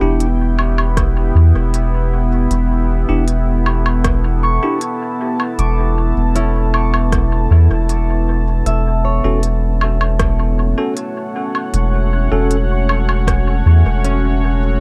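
Hazy and spacious, this excerpt of ambient dub at 78 BPM in E dorian floats on a deep, moody pad with chorus and reverb, ringing fingerpicked concert harp arpeggios through analog delay, bell-like electric piano stabs soaked in dub echo until 12.6 seconds, a round, up-front sub bass, crisp hi-hats, rim clicks and woodblock from an organic electronic kit, and a soft kick in the background, all moving from Em7 to F#m/E at 8.7 seconds in an echo-heavy digital ambience.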